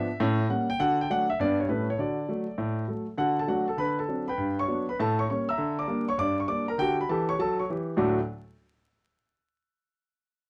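A warm grand piano opens alone and up front, playing exuberant, swinging stride jazz at 200 BPM in D major. It spans a broad register from deep bass to high treble notes, moving from an A7b9 through D, G and A7 before a passage colored by Gmaj7 and Gm/D chords, and it plays until 8.2 seconds. The dark production adds vinyl crackle and a moderate club reverb to this short extract from a longer piece.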